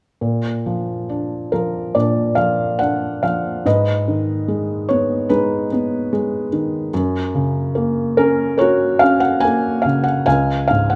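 Melancholic and reflective, this short classical fragment, cut from a longer piece, features a lyrical solo upright piano muted with felt, played with rubato around 72 BPM in 4/4 with uneven beats. The piano sounds soft, mellow and intimate, up front with audible action noise and light reverb, ranging from Db2 to Ab5 as the harmony moves from Bb through Abm and Gb to settle on Db at 10.3 seconds.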